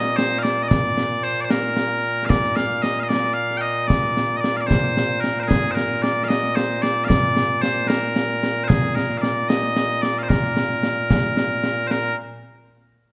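A straight 6/8 lilt at 75 dotted-quarter beats per minute drives this ceremonial, stirring fragment of traditional Scottish pipe music in Bb mixolydian. Piercing, continuous bagpipes carry the melody up front from the opening, ranging from Bb2 to G5, while concert snare and bass drum, acoustic and close with dark cymbals and a small-room sound, join at 0.1 s. A moderate scoring-stage reverb and a dusky production frame the ensemble, and a new section begins at 11.9 s just before the clip is cut off.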